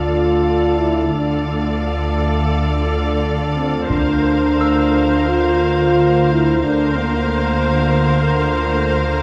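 Ominous and tense, this short cut from a suspense film score moves in a straight 4/4 from D minor to a Bb add9 chord over D at 3.9 seconds. Dark, soft-attack French horns hold the loudest sustained chords beneath a pure, ethereal glass harmonica, with a rich viola section beneath a distant, clear violin melody, while cellos and double basses anchor the bass on D over a round sine sub bass drone. A huge, barely audible impact opens the passage, a ringing fingerpicked harp glints in the background, and a very quiet taiko ensemble on heavy sticks sounds from 3.9 to 5.2 seconds, all set in a wet scoring-stage reverb with vinyl crackle and a dulled top end.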